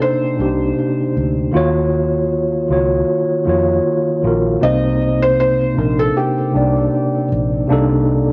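A soft, felt-muted upright piano with audible action noise carries the melody over a clean tine electric piano from the start, joined at 0.4 seconds by a dark, round, foam-muted electric bass, in this melancholic, hazy lo-fi hip hop piece at 78 BPM with a swung feel in C dorian, moving from Cm7 to Ebm7 and back, with both keyboards coloured by cassette tape, the upright also carrying tape echo, all within a small, lightly reverberant room until the piano melody stops at 7.3 seconds.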